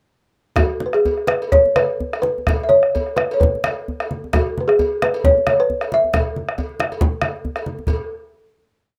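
A festive, earthy West African drum ensemble piece in 4/4 with a light 16th-note swing, speeding up from 125 to 146 BPM as a woody, dark balafon sounds call-phrase motifs from F#4 to E5 up front over a round, compressed, saturated bombo, a deep, close djembe, bright low-tuned congas and a metallic, distant cowbell bell pattern, all entering at 0.6 seconds in a rough home demo mix with light reverb before a final hit at 7.9 seconds.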